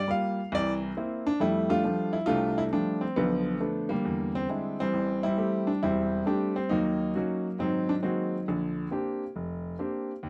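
A close, intimate recording places a clear baby grand piano up front in a light reverb, with the natural sound of the instrument's action audible beneath the notes. This is a short, playful cut of solo jazz piano, swinging its eighth notes in 4/4 at 136 BPM in F major. The piano plays alone throughout its 10.3 seconds, ranging from E1 up to F5. It opens with a brief Gm7 to C7 turnaround before settling on F69 at 1.4 seconds. From there the harmony takes a colourful route through Bm7b5, E7alt and Am7, then slides to Ebm7 and Ab9 before coming to rest on Bb69.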